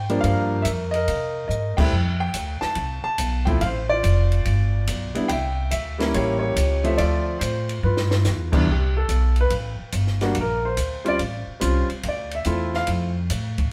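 Swung eighths in 4/4 drive this sophisticated, relaxed jazz piano trio excerpt, where an intimate, up-front concert grand with deep bass and audible action noise carries the melody over a woody pizzicato upright bass and a compact cocktail kit with dark cymbals, a high-tuned snare and a tight kick, with drum fills around 1.5 and 7.8 seconds and a band accent at 1.7 seconds before the piano takes a solo from 8.7 seconds, all played live in a moderate stone room.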